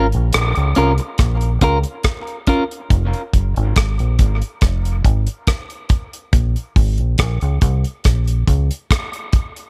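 A damped 70s drum kit sets a slow, straight 70 BPM dub reggae pulse in Bb minor, with dry hi-hat, rim click and a tight kick sitting up front, while a deep fingered electric bass, dark and round, moves between Bbm and Fm. A bright, compressed clean electric guitar carries dub echo over the opening break before dropping out at 2.6 s, leaving bass and drums in a light small-room reverb. The mood is spacious and meditative, a brief cut from a longer piece.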